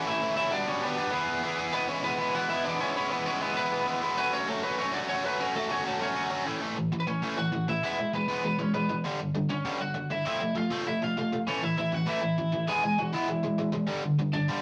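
A biting, overdriven electric guitar, double-tracked, picked and set up front, drives this upbeat, energetic punk cut from a longer piece in a straight 4/4, its bright riff running the full 14.6 seconds. Beside it, a lightly driven lead guitar with a twangy, slightly broken-up edge and compressed attack carries the melody, also picked and up front, across chords that move from A, G/B and E through F#m before cycling A, E, G5 and F. The rough rehearsal-room sound sits in a moderate studio reverb, with the music shifting into new sections at 1.7 and 6.6 seconds.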